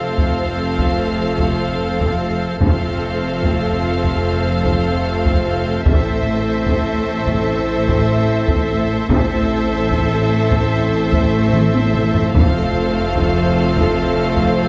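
Set in a moderate concert hall, this dark, relentless cinematic film-score excerpt at 74 BPM layers a focused violin melody and a woody second violin line over a smooth viola section, a shimmering strings-celeste pipe organ, distant horns, very quiet vintage trombones and rich cellos with double basses, all over harmony shifting from F to A minor and back, while a distant taiko ensemble struck with hard sticks drives beneath and breaks into a fill at 11.5 seconds.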